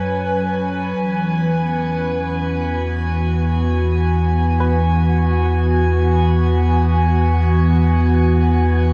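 A warbly, tape-like pad sits up front with nostalgic, lo-fi character, its detuned chorus and built-in reverb sustaining slow-blooming chords that move from F#m to Eadd9 in this serene, melancholic ambient fragment in free time. Beneath it, a deep, round sub bass holds the low end, while a very quiet, dark pluck traces gentle arpeggios until about 7.7 seconds. The whole passage floats in a wet shimmer reverb with an 8.4-second tail.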